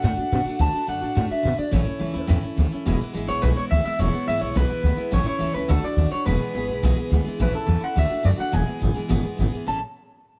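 This short excerpt, cut from a longer piece, has a lively studio sound with a touch of reverb around a trio of strings. It is rowdy, upbeat rock at a brisk 212 BPM in a straight 4/4, set in A major and tuned slightly sharp at A4 = 441 Hz. An electric guitar through a small old amp carries the melody with a twangy, slightly broken-up bite, its picked lines trailed by tape echo. Beneath it, a picked steel-string acoustic dreadnought with fresh strings sits up front, full-bodied and bright as it picks out the accompaniment. The pizzicato upright bass is thumpy and woody, the loudest of the parts, anchoring the low end. The chords cycle through D, A and E, shifting into a quicker turn of the same changes at 7.4 seconds before landing back on A at 9.7 seconds.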